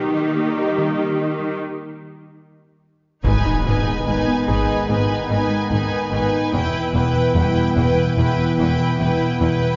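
Heard from further back in a wet concert hall, the recording sounds softened at the top, with a long reverb tail. This cinematic hybrid of orchestra and electronics, cut from a longer piece, feels relentless and vast. It opens with a hollow, flute-like pad with chorus sitting in the background, a ringing, harp-like synth pluck playing mellow arpeggios, lush bowed violas carrying the accompaniment, and focused cellos holding the bass. After a break at 1.6 seconds, the arrangement grows at 3.2 seconds: a close, dry taiko ensemble struck with heavy sticks and an electronic impact mark the arrival, distant double basses deepen the low end, and a bright, tight trombone section sustains chords. Two violin sections join here: one holds a smooth, even second line from 3.2 seconds, and the other follows a moment later, singing a high vibrato melody. A very quiet, polished baby grand piano adds texture from 4.5 seconds.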